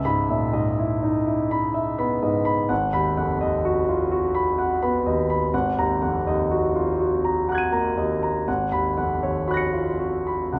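Set up front in a moderate recital-hall reverb, this serene, hazy fragment of impressionist classical solo piano presents a clear concert grand with deep, natural bass, drifting in rubato 3/4 across a range from G#1 to D#7 through lush chords moving from C#m9 to G#m7, F#69/G# and G#m11.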